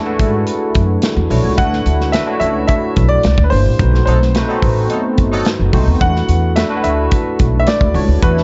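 This dark, warm-leaning production sits in a small room, with the top end rolled away and a polished 1980s jazz-funk pop sheen. At a straight 108 BPM in 4/4, the short excerpt feels bittersweet and nocturnal, moving through chords such as E9sus4, D69, C9 and B7b9. A clear, natural baby grand carries the melody while a bright, barky tine electric piano, clean through a combo amp with analog chorus, supplies the accompaniment up front. A woody, growly pizzicato upright bass on steel strings and a punchy, mid-forward studio kit of kick, snare and hi-hat join at 0.2 seconds. A distant, roomy horn section with light vibrato slips in at 4.1 seconds for a tight second line, landing inside a band accent that runs from 3.8 to 6.0 seconds.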